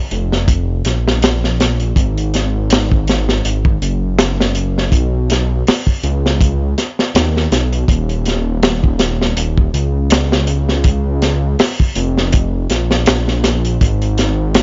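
A dry, gritty hardware recording with its top capped at 7.5 kHz gives this dark, melancholic trip hop excerpt in Eb minor a close, muffled grain, moving at 81 BPM with a light 16th-note swing. Up front, a crunchy, saturated breakbeat kit with a punchy kick, high-tuned snare and hi-hat sounds like a small room. Alongside it, also up front, a deep, rumbling detuned saw bass with beating unison layers sustains from 0.1 to 14.6 seconds.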